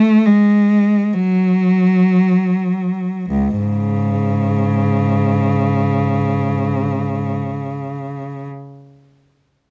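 Classical and expressive, this short passage for unaccompanied cello unfolds in free time with a meditative, yearning mood. A single rich, bowed cello carries the whole piece alone, sounding from 0.0 to 8.5 seconds and moving between C#2 and A3. The tone is smooth and even, shaded with vibrato, and the instrument sits close and up front. The opening passage slows down over its first 3.3 seconds before a new section begins. A moderate small room reverb lends the cello a gentle sense of space, and the recording ends as a cut from a longer work.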